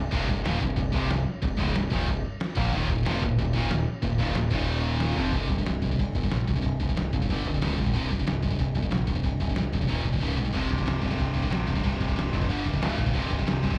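A growling, overdriven picked bass opens this dark, epic heavy metal clip in C minor at 184 BPM, and at once three distorted electric guitars join with slapback echo: a compressed one in the background, a bright double-tracked overdriven one that drops out at 5.3 seconds and returns at 10.5, and a scooped high-gain one. A lo-fi, sampler-style drum kit, pitched down and muffled with a thumpy kick and re-recorded in a large room, drives the riffs through power chords on C, G, Db and Eb, and its kick and snare fall away briefly at 10.2 seconds. The whole thing sounds like a live gig heard through a club PA, with the bass pushed up front.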